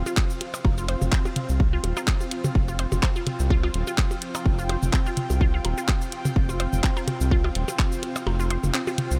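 A swung 4/4 groove at 126 BPM drives this sparse, cool minimal techno cut from a longer piece, built on a punchy, layered electronic kick placed up front. Around it, a house kit supplies handclaps, hi-hat and shaker, while tape-warm electronic percussion blips and toms drift through a diffuse ambient delay. A round, deep analog bass, dark and evolving with a ring-modulated edge, pumps against the sidechain beneath harmony resting on an F5 chord. Higher up, a cloudy granular pad blurs into its own reverb with a subtle chorus, and a squelchy, resonant blip pluck riffs in the background, its bright tone coloured by phaser, 12-bit sampler grit and analog delay. The kick drops out at 8.3 s, leaving the other parts breathing in a light reverb until the excerpt ends at 9.2 s.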